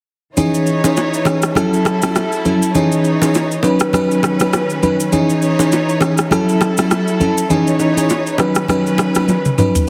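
A sultry, mellow afrobeats groove in 4/4, carried by a swung sixteenth-note lilt and cut from a longer piece. Up front, an FM electric piano with a soft pad layer supplies the accompaniment, its dreamy, fast-attack tones decaying under chorus and tremolo, with a noise layer beneath. Alongside it, a studio string section holds sustained chords with a woody, bowed ensemble sound touched by vibrato. An electronic, produced afro-pop drum kit of rim click, shaker and toms runs throughout, closing with a drum fill from 9.3 to 9.9 seconds, while bright, hard-hand congas and bongos sit in the background in a small-room sound. The harmony circles through C#madd9, F#m7 and Badd9 under a moderate plate reverb, and the whole mix carries a heavily compressed, radio-style finish.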